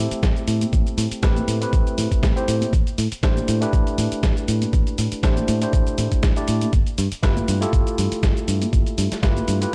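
A groovy, cosmic nu-disco excerpt at 120 BPM with a light 16th-note swing opens on a clean tine electric piano, roughened by vintage 12-bit sampler grit and analog delay, over a dark, round, foam-muted fingered electric bass, moving through Am9, D9sus4/A and G13 as a dusty, compressed soul sampler-style kit of hi-hat, shaker and medium-tuned snare arrives at 0.1 seconds, followed at 0.2 seconds by an up-front, thumpy electronic kick, both touched with studio reverb, while very quiet small-room congas join at 0.6 seconds, all within a dry, gritty cassette-and-transformer-saturated hardware sound.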